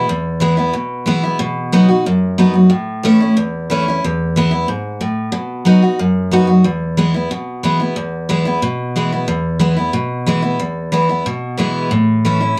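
Retro and rollicking, this rock excerpt features a lone picked steel-string dreadnought acoustic guitar, bright and up front with audible finger squeak, cycling through E, B and A chords across a phrase heard twice in a moderate studio ambience.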